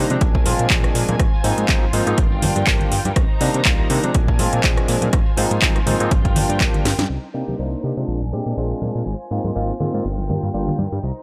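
Funky and nostalgic, this filtered disco house clip rides a barky, lightly overdriven tine electric piano, a distant bowed violin section with 12-bit sampler grit, a fat detuned sawtooth bass and a layered house kit with a cracking snare and metallic hats, while background tambourine and congas add hard-handed brightness and a punchy, up-front electronic kick drops out at 6.7 seconds just before a filter sweep from 7.1 seconds.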